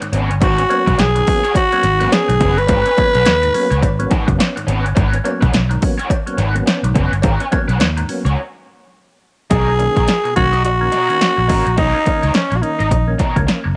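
A raspy, growling tenor saxophone leads this funky, hypnotic funk at 106 BPM in G# minor, entering at 0.4 s and returning at 9.5 s over a punchy analog drum machine, a dark, round fingered electric bass, a bright, overdriven garage guitar with wah, mellow tonewheel organ stabs through a slow rotary speaker, and a faint metallic cowbell that stops at 8.0 s, as the harmony moves from G#m11 to Bmaj9 in a close mix with little reverb.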